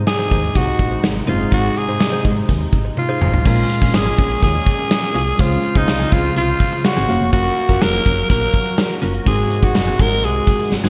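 A straight 4/4 groove from a gated 1980s drum kit drives this uplifting, glossy pop excerpt, its punchy kick, medium-tuned snare, hi-hat, tambourine and bright cymbals sitting up front in a gated room. A drum fill arrives around 3.0 seconds, leading into a new section at 3.5 seconds, and another fill arrives at 10.7 seconds. A round, solid FM bass anchors the low end, while a soft, dark FM electric piano with chorus and phaser and a shimmering, retro pulse-width pad with a slow attack and long release fill in the background. A very quiet, clean electric guitar recorded direct picks a compressed, scooped riff. Over this, a raspy, gritty alto saxophone carries the lead melody with vibrato and scooped notes. The harmony moves from Ab through Bbm7, Dbmaj7 and Gbmaj7 to Ab7, and a lush hall reverb completes the bright digital production.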